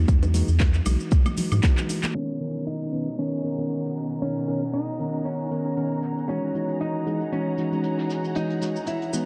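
This relaxed, soulful deep house passage, cut from a longer piece, opens on mellow tine electric piano stabs that pump against the beat, run through tape echo and a filter sweep that carries through its whole length. Beneath them, a round sine sub bass, an overdriven electronic kick that sits up front, a layered house kit with metallic hats, handclaps and woodblock, and hard-handed bongos and congas drive the groove before a drum fill at 1.8 seconds. All of these have dropped away by 2.1 seconds, leaving the electric piano over a very quiet 70s kit with a fat, rolled-off snare and hi-hat alongside a grainy, vintage cabasa. At 2.2 seconds a compressed, dark hollow-body jazz guitar takes the melody through a diffuse ambient delay, while a woody, lush string section playing sul tasto and a distant, earthy violin section pulse softly underneath. The whole mix is soaked in huge reverb and filtered to a dreamy, hazy glow over lazy major ninth chords.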